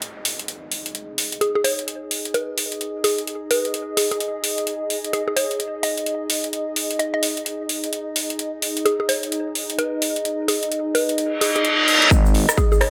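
A woody, mellow mallet-like synth pluck carries the melody from 1.4 seconds, coloured by chorus, phaser and tape echo, over a warbling, nostalgic lo-fi pad that pumps under sidechain and a layered electronic kit of metallic high-passed hi-hats and rim clicks. This swaggering, bouncy bass house excerpt moves at 129 BPM with a swung 16th-note feel, opening on a downlifter and closing on a reverse cymbal and riser. At 12.1 seconds a punchy kick, a growling, thick FM bass with tube saturation and a grainy, distant egg shaker arrive together under light reverb.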